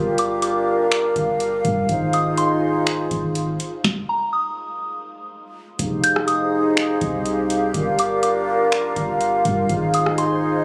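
A mellow large flute ensemble opens this melancholic, hazy cloud-rap excerpt, holding sustained chords with an airy, straight tone, while a soft 808-style bass sits beneath with a round, dark sine sound. At 123 BPM in 4/4 with a half-time feel in F dorian, a booming analog drum machine joins almost at once, dry and up front, with a deep kick, tonal snare, metallic hi-hats, rim clicks and finger snaps. High above, a gentle FM synth bell carries the melody, its pure tone shaped by chorus, a low-pass filter and digital delay, with a long release on each note. The harmony moves through Gm7 and Ab6 before a stop from 3.8 to 5.8 s, then resumes on Fm9 for the second half. The recording sounds as if captured on a phone in the room, with club reverb, light digital ambience and compression framing the sound.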